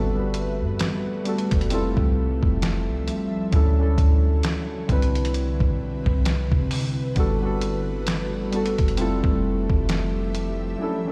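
A swung sixteenth-note groove from a gritty, overdriven sampler-style drum kit with a thumpy kick and fat snare enters at 0.3 s alongside a round, deep 808-style bass and muted, felt-like synth keys with chorus, while an ethereal, airy pad with ensemble chorus holds sustained major-ninth chords in this smooth, tender contemporary R&B excerpt, heard through a big sound system in a bare stone room before the drums drop out at 10.8 s.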